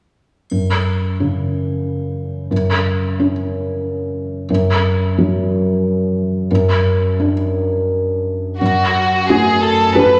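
A scoring-stage reverb with a 1.9-second decay surrounds this short cut from a longer cinematic film score, a rubato piece in 3/4 whose mood is one of longing and is deeply moving. A felt-muted upright piano carries the accompaniment from 0.5 seconds, its tone soft, dark and intimate, with thick felt and audible action noise placed up front. At the opening, a triangle adds a bright, close and dry glint in the background before dropping out by 1.8 seconds. At 8.6 seconds the music shifts into a new section as a lush, focused violin section takes up the second line with rich vibrato, sitting forward in the sound. Beneath it, a cello section holds the bass, smooth, even and distant, heard very quietly as the passage settles on an F# minor chord.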